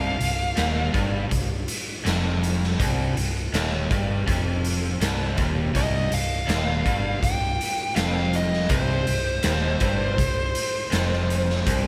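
A straight, unhurried 4/4 groove drives this gritty, smoky slice of blues rock and southern rock, built on a single minor chord and cut from a longer piece. The raw garage drum kit comes in at 0.2 s, with a punchy kick, a medium-tuned snare and hi-hat sitting up front in a saturated, pumping stone-room sound with a rolled-off top. A crunchy, double-tracked overdriven guitar picks a low riff throughout, bright and forward with a slapback echo. Beneath it, a vintage foam-muted fingered bass stays round and dark. A dark, smooth lead guitar with overdrive and slapback echo offers a brief picked phrase at the start, then returns at 5.8 s to carry the melody. A lush hall reverb gives the whole trio a big arena sound.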